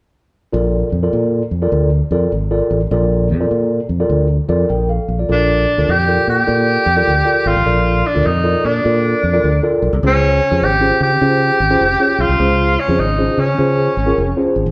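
Uplifting and warm, this short cut from a longer piece is 1960s-style soul with a swung 4/4 groove. A mellow, clean tine electric piano and a round, up-front fingered electric bass open together at 0.5 seconds, resting on a Bbmaj7 chord. At 5.3 seconds a breathy tenor saxophone takes the melody in a solo, jazz-style voice, with a whispered subtone, soft attacks, scooped notes and vibrato that give it an intimate, vintage character. The harmony moves to Dbmaj7 at 10.0 seconds as the saxophone carries on above the keys and amped bass. The trio sounds like a band playing live together in one room, wrapped in a wet stone-room reverb.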